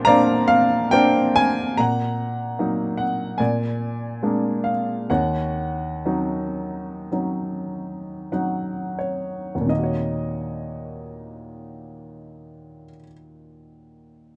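Light reverb frames a dark, warm production in which a clear, intimate upright piano sits up front, its woody tone carrying audible action noise that gives the sound a natural, close-up character. This is a brief excerpt of lyrical classical solo piano in Eb minor, set in 4/4 but played with a rubato feel, its tempo drifting between 41 and 76 BPM. The mood is wistful and reflective, with the harmony moving from Bbadd9 through Ebm/Bb and Bb7 to Ebm7. The piano spans a range from Bb1 to C6. Between 1.8 and 9.7 seconds the playing slows, and a piano fill arrives at 7.7 seconds before the final section unfolds to the close at 14.4 seconds.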